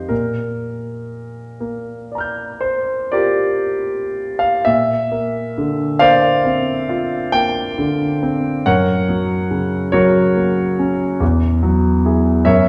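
A clear concert grand piano plays alone from the first moment, spanning E2 to G6 in an unhurried, rubato 9/8 at roughly 38-49 BPM, an impressionist classical passage in Bb lydian with a hazy, dreamy mood. Its deep bass and long sustain carry chords drifting from Bb6 through Bbadd9 at 4.7 s, where the opening phrase begins again, then on to Gb and Eadd9. The natural tone sits up front, yet a wet recital-hall reverb and a softened top end place the listener further back in the room, in this short passage cut from a longer piece.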